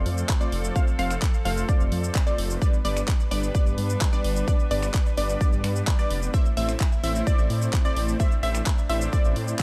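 Dry and close, with little reverb, this short cut of euphoric, powerful festival progressive house sits in a straight four with every melodic layer and the bass breathing under sidechain pumping. A pop drum kit of finger snaps, handclaps, shaker and hi-hat enters at 0.1 seconds, its overdriven, warm hats carrying a small-room character, and a punchy, layered electronic kick follows up front from 0.3 seconds. Beneath them, a thick, beating detuned saw bass blends sawtooth, square and sine layers into a saturated yet mellow low end that sounds menacing and forward. A supersaw stab riff brings detuned unison saws, a sub octave and a moving notch, while a lush unison pluck spins decaying arpeggios through cassette tape colour and delay. In the background, a rich chamber string section bowed with light vibrato and a reedy, gut-string, period-style tone sustains chords moving from F to G to A minor.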